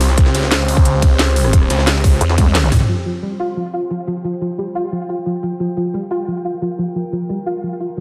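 A straight 4/4 drum and bass groove drives this dark, aggressive cut from a longer technical track. A tight, up-front electronic kick punches alongside a layered, produced kit of cracking snare, crisp hats, ride, rim clicks and toms, re-recorded in a small room, while a very quiet, gritty, pitched-up jungle sampler kit with a high-tuned snare and tape colour sits beneath. A thick, swirling detuned saw bass, saturated and phased with sidechain pumping, holds the low end until 2.2 s, when a nasal, resonant vowel-sweep wobble bass with chorus takes a brief turn before a drum fill and band accent close the drop. From 2.9 s, soft, round pluck arpeggios with ensemble chorus and delay carry on over a deep, moody ambient pad whose sustained, wave-folded chords, coloured by chorus and ring modulation, have run from the start. A lush hall reverb adds digital ambience, and the master is dense and heavily limited.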